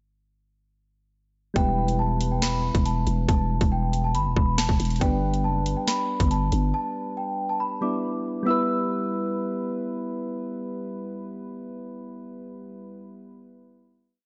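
Drill hip hop in E minor at 139 BPM with a half-time feel sets a menacing, ominous mood, built on soft, round electric-piano-like synth keys holding open-voiced, chorused chords in a sampled-style loop, while a delicate, bell-like celesta melody with subtle chorus and analog delay repeats high above. From 1.6 s a growling, buzzy 808-style bass plays long sub notes with pitch slides that follow the hard-clipped kick, and the drill kit adds a sharp snare and metallic, skipping hats with fast rolls, until bass and drums drop out around 6.6 s. The harmony moves from Em to G and back to a final Em chord at 8.5 s, the mix soaked in dreamy plate reverb with a dark, muted top end.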